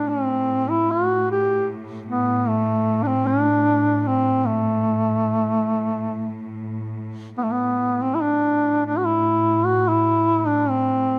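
Close, detailed microphones and light reverb give this short Caucasian folk lament an intimate, present sound. A mellow duduk sits up front as the solo voice, carrying a folk-style melody with vibrato across the span from A3 to G4. Beneath it, a warm studio cello section holds a bowed drone on A2, smooth and even, with its own gentle vibrato and a close ensemble presence. Both parts play from the opening through to the end at 11.2 seconds, moving in a rubato triple metre that lets the line breathe freely. The music shifts into a new section at 7.4 seconds, and the whole passage, cut from a longer piece, carries a solemn, longing mood.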